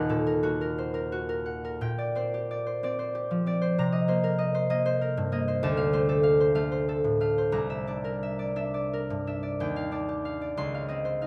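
This classical solo harp piece has a peaceful, dreamy mood, moving in a flexible, rubato 6/8 at roughly 56-66 beats per minute counted in dotted quarters. The concert harp carries everything alone, fingerpicked and up front, with a ringing, warm tone that spans from a deep Eb1 up to C6. Though the key is Bb major, the harmony drifts through lush colours: it opens on Ebm6, settles onto Bb69 at 1.8 seconds, then wanders through Cm7, Dm7 and C9 before closing on Ebmaj9 and Dbmaj9. A brief opening gesture gives way at 1.8 seconds to a longer, unhurried passage that runs to the end at 11.3 seconds. The instrument sits in a moderate recital hall, whose 1.4-second reverb lets each note bloom gently, and the performance is tuned slightly below standard pitch at A4 = 439 Hz. This short excerpt is taken from a longer work.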